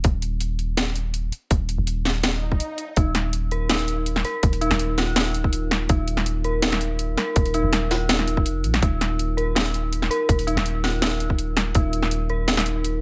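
This dark, cinematic half-time drum and bass excerpt opens with a hard-clipped electronic kick and a layered kit of cracking snare and bright hi-hats, both overdriven, up front and set in a small room ambience. Beneath them, a deep, sine-toned 808-style bass holds long notes with a fast attack and a mellow decay, also placed up front. A short electronic swell sounds from 2.4 seconds, running into a brief break at 2.6 seconds. At 3.0 seconds an eerie, detuned FM synth bell enters playing arpeggios, its mellow, inharmonic, warbling, vintage tone treated with chorus and delay and trailing off with a long release. The kick drops out at 11.8 seconds while the kit, bass and bell carry on to the end, all within a light reverb.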